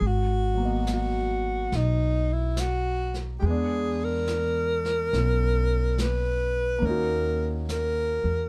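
A clear, close-miked alto saxophone carries an intimate, melancholic jazz ballad melody with vibrato and scooped notes from the opening, over a concert grand piano with audible action noise and long sustain, a woody pizzicato upright bass sitting up front, and a distant, roomy brush kit on snare and hi-hat, the piece moving at a slow 70 BPM swing in G# minor through G#m9, E7#11 and D#m7 in a dry, dark mix cut from a longer performance.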